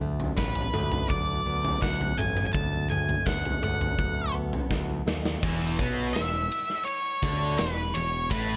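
A lightly reverberant mix opens this short cut from a bittersweet, anthemic quiet-loud alternative rock piece at 83 BPM in straight 4/4, with a big-room acoustic drum kit and its punchy kick up front and a dark octave-fuzz lead guitar carrying the melody from 0.4 s. Underneath, a plugged-in steel-string acoustic guitar fingerpicks arpeggios in the background while a growling, round, overdriven electric bass holds the low end. After a drum fill, the arrangement shifts at 5.4 s as the acoustic guitar stops and a crunchy overdriven guitar and a bright, thick fuzz guitar take up a riff.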